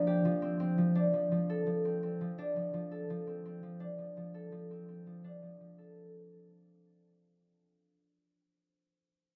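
A moderate studio reverb surrounds this delicate, autumnal folktronica excerpt at 84 BPM in a straight 4/4, where a solo concert harp plays alone from 0.0 to 8.0 seconds, up front, warm and ringing, fingerpicked between F3 and A4 with a touch of delay, sounding a Dm7/F chord at 0.2 seconds as the recording fades out over its first 6.0 seconds.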